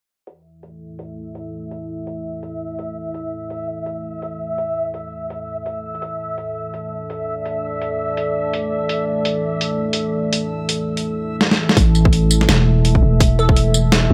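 A half-time drum and bass groove at 167 BPM in 4/4, swung on the sixteenths, carries this heavy, spacious piece, which is cut from a longer work and tuned slightly low. Gritty, compressed and pitched-down sampler-style drums with hi-hat, a medium-tuned snare and tambourine sit up front, while a dark, detuned analog pad holds sustained chords over an A5 harmony, colored by chorus, phaser and sidechain pumping. A reversed, dreamy texture rises high above, softly swelling into its own reverb, as a filter sweep runs through the opening stretch. After a drum fill at 11.4 seconds, the drop lands at 11.8 seconds with a growling, buzzy 808-style bass driven through tube saturation and a hard-clipped, overdriven electronic kick. At 13.4 seconds a glassy, crystalline wavetable pluck briefly sounds in the background through chorus and dub echo, all within a moderate echo-chamber reverb and a low-pass filter.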